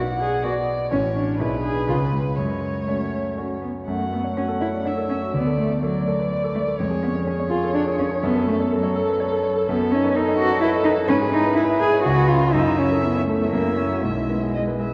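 A clear, up-front concert grand piano with deep bass and long sustain carries the accompaniment in this spirited, graceful, quick classical-period piano trio passage in 3/4 at 124 BPM, played with rubato in F# minor before turning to E major at 9.7 s, while a close cello con sordino sings a dark, vibrato-laden second line and a distant, veiled muted violin bows the melody above, all bathed in a wet concert hall reverb and a worn, warbling old cassette tape sound with drifting pitch.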